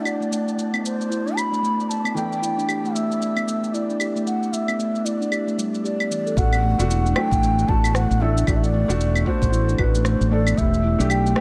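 Hypnotic and mystical, this organic downtempo excerpt at 114 BPM with a swung 16th feel sets a breathy bass bansuri melody, carried by digital delay and shimmer reverb, over felt-muted upright piano with audible action noise and sidechain pumping, ringing steel tongue drum arpeggios played with rubber mallets, a faint wind-like noise texture that drops out at 6.4 seconds, and produced electronic claves, shaker and rim click, before a dark, round fretless electric bass and a deep electronic kick enter at 6.4 seconds.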